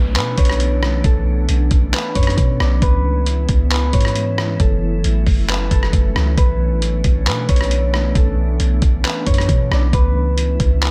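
Atmospheric cloud-rap hip hop at 135 BPM in a half-time 4/4 feel, this hazy, melancholic cut from a longer piece sits in B dorian, moving through chords like Bm11, C#m7 and F#m7. A mellow, thumb-plucked concert harp carries the melody in a ringing upper register, softened by a low-pass filter and trailed by digital delay. Beneath it, a glassy FM pad holds slow-attack, ethereal chords with a long release, thickened by ensemble chorus and its own reverb and pumping against the beat. A clean, sine-like 808-style bass booms deep and dark with a fast attack that decays, joined by an up-front, gritty, pitched-down, sampler-style trip hop kit of thumpy kick, handclaps, hi-hat and rim click that enters at 0.2 seconds, compressed and re-recorded in a small room. A very quiet electronic downlifter drifts under the opening until 2.8 seconds, and the overall mix stays dry and loud.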